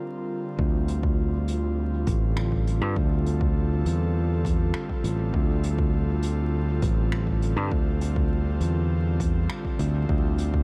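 Spacious and hazy, this ambient dub fragment opens with an airy, breathy pad holding chorused chords over a Gm to Dm9 change; a growly, up-front fingered electric bass with tube saturation and a punchy, overdriven electronic kick drum arrive at 0.6 seconds, soon joined at 0.9 seconds by a faint brush kit whose finger snaps and hi-hat carry dub echo, all set in a dry, dark mix dusted with vinyl crackle.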